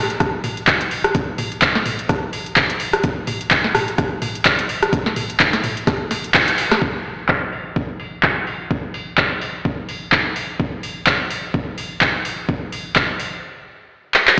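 A swung sixteenth-note house groove in 4/4 drives this gritty, trippy fragment of a longer piece. A booming analog drum machine sits up front with handclaps, metallic hi-hats, rim clicks, a tonal snare and toms, with low-pass filtering on the toms, hats and snare and a short room on the snare, claps and hats, while a thumpy, tape-warm sampler-style electronic kick sits lower in the mix. The whole track is bathed in a lush hall reverb and the tone of an AM radio played through a big system in a bare room, with a band accent at 6.3 seconds, a new section at 6.8 seconds and a drum fill at 14.1 seconds.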